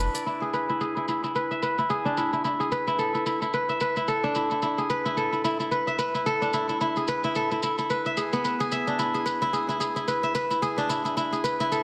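A loose, swung sixteenth-note groove in 4/4 drives this earthy, hypnotic organic downtempo excerpt, carried by an overdriven electronic hi-hat and shaker that sit in the background, muffled by low-pass filtering and re-recorded in a small room. Up front, a ringing, crisp acoustic kora plays fingerpicked arpeggios through a low-pass filter and delay, moving over chords from E7 to Dsus2, D5 and back to E7 before closing on Eadd11. A wet digital room reverb surrounds the parts, and the dense, heavily limited modern master keeps the sound full and close.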